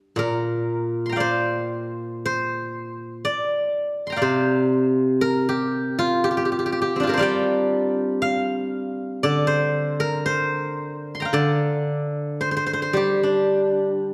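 Set in a moderate recital-hall reverb, this contemplative, longing fragment of Chinese traditional solo plucked-string music features an up-front steel-string zither, played with fingerpicks and sounding bright, silvery and ringing, as it unfolds rubato in G yu mode at around 54-62 BPM from 0.2 to 14.1 seconds across a span from Bb2 to C6.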